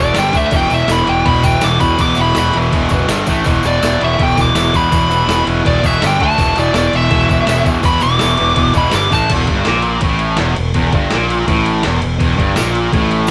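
Raw and rowdy, this garage rock excerpt charges along at 164 BPM in a straight 4/4, the band playing live in one large, reverberant room. A dark, fuzzed-out lead guitar solos over the first 9.3 seconds atop an up-front, double-tracked riff guitar with a bright, distorted bite, while a round, punchy overdriven fingered bass anchors the low end. A gritty, pitched-down sampler-style kit with a thumpy kick and tape-warm character drives the beat, a jingly tambourine sits in the background, and the passage turns toward an Edim chord at 9.3 seconds.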